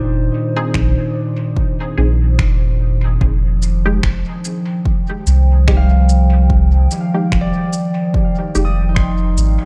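Meditative and hazy, this ambient dub fragment, cut from a longer piece, moves at 73 BPM in F dorian with a gentle swing on the sixteenths. A warbling, lo-fi pad with a nostalgic, detuned character holds sustained chords throughout, its slow attack and long release softened by chorus and its own reverb, while a concert harp adds ringing, fingerpicked arpeggios sent through dub echo. Underneath, a deep, round sub bass sits up front with a soft, sustained tone, and an overdriven electronic kick enters at 0.7 seconds with a punchy, layered weight. Electronic finger snaps and shaker arrive alongside it, trailing dub echo, and a filtered chord stab, resonant and wave-folded with a short, plucky decay, flickers through phaser and echo until 8.7 seconds. The harmony shifts from Bb9sus4 to Fm9 at 3.2 seconds, and the production stays dark, dry and warm.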